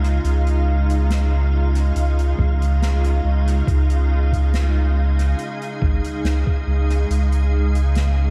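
Peaceful and hazy, this ambient dub fragment, cut from a longer piece, rests on a single Dbadd9 chord held by a pure, organ-like pad with ensemble chorus and reverb, over a round, mellow sine sub bass sitting up front. A soft-mallet drum kit with a fat snare, hi-hat and toms carries dub echo in a natural hall-like space, while a breathy, wind-like noise texture drifts dark in the background. A muffled, thumpy, pitched-down electronic kick joins at 2.4 s and drops out at 6.6 s, all within a dark, warm production and small room ambience.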